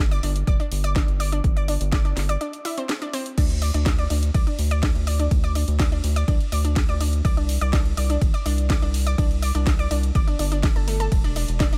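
Driving and expansive, this progressive house excerpt sets a round, deep analog bass with sidechain pumping and an up-front electronic kick beneath detuned sawtooth analog pluck arpeggios with a filter sweep, chorus, tape echo and pumping, while an overdriven house drum kit adds a cracking snare, bright hats, crash and ride, with a brief break at 2.4 seconds in a dry mix that moves from Gsus4 to C5 and Dsus2.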